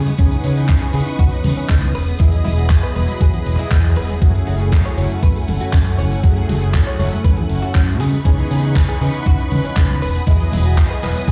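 Nu-disco with a cosmic, sleek mood, this short cut from a longer piece rides a straight feel anchored by a thumpy, sampler-style electronic kick that sits up front. A tight funk drum kit adds handclaps and hi-hat, while damped, thin-skinned congas sit in the background. A growly fingered electric bass and a clear, lush string section holding sustained chords both pulse with sidechain pumping, as does a round, detuned synth brass part whose dark sawtooth tone carries chorus, vibrato, a filter sweep and analog delay. A clean, scooped electric guitar riff, recorded direct and compressed, shimmers behind them through lush chorus and analog delay. The harmony moves from C#m9 to Emaj7 and F#m9 before returning to C#m9 at 8.0 seconds, and the whole mix sounds as if played on a big sound system in a bare room, with a stony, small-room reverb.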